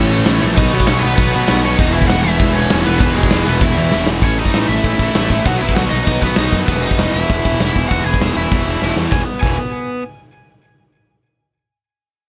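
A punchy, up-front big rock drum kit in a bright stone room drives this energetic, rebellious punk rock excerpt at 196 BPM in E major, with fills at 3.9 and 8.5 seconds, while an overdriven cranked stack guitar with digital delay carries the melody over a growly fuzz picked electric bass, a compressed distorted electric guitar and a tight distorted guitar play riffs in the background, and a very quiet, double-tracked thick fuzz guitar adds its own riff until 6.7 seconds, cycling through A, B and E with little reverb.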